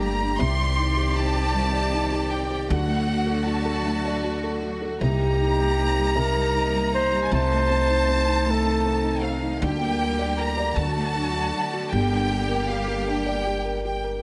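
Aching and melancholic, this six-eight pop ballad excerpt rests on a thick-felted upright piano with audible action noise, a lush bowed symphonic string section holding sustained chords, and a woody pizzicato upright bass set up front. A rich studio violin section carries an expressive second line throughout, while a breathy, distant flugelhorn with light vibrato and scooped notes sings the jazz-style melody from 5.0 to 9.3 seconds, its delay trailing into light small-room reverb. The harmony moves from Cmadd9 through Adim/C before settling on Gm.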